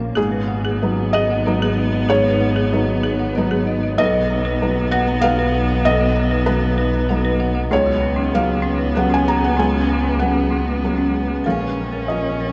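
Neoclassical piano and strings in G# dorian, a longing, fragile excerpt at 96 BPM in a rubato 3/4, drifting through G#m7, B, C#7sus4 and A#m. A soft, felt-muted upright piano sits up front with audible action noise, beside a clear, bowed double bass with vibrato, while a rich, focused cello enters at 0.2 s with a second line. Behind them, a very quiet, cloudy granular pad blurs sustained chords, and a woody, hard-mallet folk marimba plays dry, rustic arpeggios in the background, all set in a church or concert hall with wet cathedral reverb.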